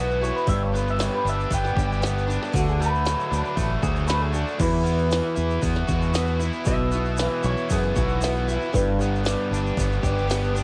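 Warm and jangly, this short folk rock and heartland rock excerpt moves at 116 BPM in a straight 4/4 through G, D, Esus2 and Bsus4, with a round, up-front fingered bass, a boxy picked acoustic guitar, a bright double-tracked overdriven guitar riff, a twangy, slightly broken-up electric guitar line through a small old amp with analog delay that stops at 9.0 seconds, a mellow, very quiet dark grand piano, a grainy egg shaker in the background and a minimal electronic click kit with a deep kick, tiny snare and clicky hats, all captured as a dry cassette home recording.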